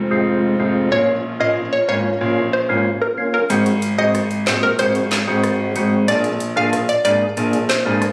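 A straight 4/4 dancehall groove at 93 BPM, bouncy and hypnotic, cut from a longer piece and moving from Fm and Bbm to Ab7 and Bb7. A hollow, detuned square-wave pluck carries the melody through chorus, low-pass filtering and delay over a fat, clicky tonewheel organ with slow rotary speaker, while a brilliant grand piano holds the low bass line and a very quiet, lush bowed string section plays through an opening filter sweep before stopping at 3.5 seconds. At that point an electronic island pop kit enters with woody snare, rim clicks, metallic hi-hat and handclaps, and the phone recording of the room adds light studio reverb.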